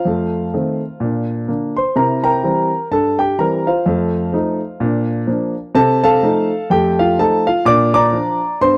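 A clear concert grand piano plays solo from 0.0 to 8.8 seconds in this swinging, exuberant stride jazz excerpt at 126 BPM in Bb major, its deep bass and natural, up-front tone captured in a dry, close 1970s-style studio sound with studio reverb as the harmony cycles through F7, Bb and C7.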